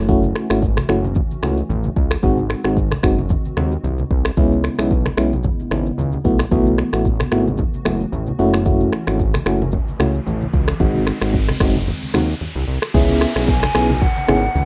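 Afrobeats at 112 BPM in C# minor with a hypnotic, smooth feel, built on a dark tremolo FM electric piano, a fat detuned sawtooth bass and an up-front deep house kit with a deep kick and metallic hats, while low-tuned congas sit in the background and a very quiet hollow pad holds chords as a riser builds from 9.8 seconds through a break at 11.9 seconds, until a breathy, close-miked flute with vibrato enters at 12.9 seconds over C#m7 in this rough home demo with light reverb.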